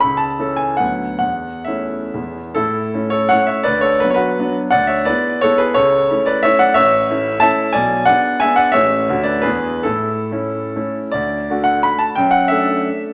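Dotted rhythms drive this romantic classical dance in 3/4, its rubato pulse shifting between 123 and 198 BPM as it moves gracefully and proudly through A major. A solo concert grand piano carries it all, its sound clear, natural and up front, with a deep bass and a range from A1 to B5. The piano rings in a reverberant stone room, and this brief passage, cut from a longer piece, changes character at about 2.6 and 11.1 seconds before breaking off at 13.1 seconds.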